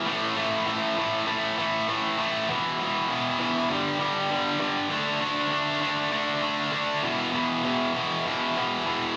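Rock with a heavy, menacing mood at 99 BPM in E minor, this short cut from a longer piece features a tight, bright distorted electric guitar playing alone for its full 9.2 seconds. Picked and double-tracked, the up-front guitar runs through A5, E5, G5 and D5 before landing back on E5 at 7.0 seconds, with slapback echo. It sounds like a live club gig heard through the venue's PA, with light reverb and a digital ambience around the room.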